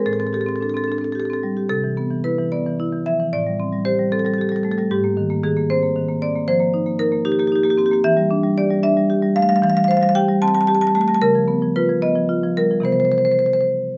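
A solo marimba played with medium hard mallets opens this reflective, flowing contemporary classical fragment in 6/8, its woody, bright and percussive tone sitting up front in a light reverb as it ranges from Ab2 to A5, with a brief opening passage giving way at 1.7 s to a longer section whose harmony drifts through rich chords such as Cmaj9, Abmaj9, F9sus4 and Db9 before settling on Cmaj7.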